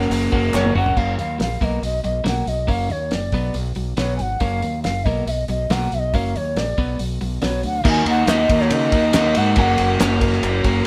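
A straight 4/4 pulse at 140 BPM drives this upbeat, jangly indie rock passage in F# major, cut from a longer piece and played as a band live in one stone room with moderate reverb. Cloth-damped drums sit up front with a thuddy, dry sound, dark cymbals, a fat snare and a tight kick, and a drum fill lands between 0.5 and 1.0 seconds. Beside them a growling fingered bass, overdriven and also up front, anchors the low end, while a clean, compressed twelve-string electric guitar rings out its riff throughout. A breathy bansuri, close-miked and slightly unsteady with a soft attack and straight tone, carries the melody high above, and a crunchy overdriven guitar riffs in the background, dropping out after the opening and returning at 7.8 seconds. Very quiet group handclaps with a hollow, human quality fill out the percussion, and a vintage string machine voiced as violas brings full-bodied sawtooth chords with ensemble chorus from 8.5 seconds as the harmony turns from F# and B5 toward D#m.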